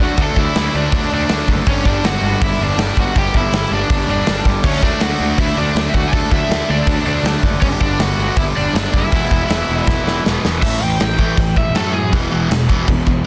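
A punchy, up-front rock drum kit with bright cymbals drives this rowdy, rebellious punk rock excerpt at 161 BPM alongside a growly fuzz bass and a cranked stack guitar carrying an overdriven melody with delay over chords moving between D, G and E. Behind them, a picked distorted electric guitar and a warm sludgy distorted guitar play background riffs, while a very quiet, double-tracked second sludgy guitar plays until 10.6 s. After a drum fill, an overdriven guitar solo takes over at 10.6 s over a dense, heavily limited mix with light reverb.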